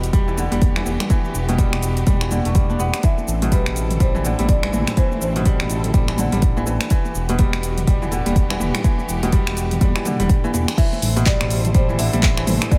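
This spiritual, earthy afro house piece at 124 BPM in E minor features a bright, ringing kora playing crisp fingerpicked arpeggios through tape echo. A lush, distant symphonic string section holds bowed chords with vibrato in the background, and a smooth, mellow synth bass sits beneath, both pumping against the deep, up-front electronic kick. The produced deep house kit adds dark hi-hats, shaker, finger snaps, handclaps, toms and crash cymbal, while thick-skinned, high-tuned congas with soft hands sit far back, all carried by a swung sixteenth-note feel. From 3.0 seconds a woody rosewood marimba enters quietly in the background with gritty vintage sampler texture and tape echo. The harmony moves between Em7 and Am7 until a band accent launches a drop at 10.8 seconds, where the marimba returns over the full groove as this short cut from a longer track closes.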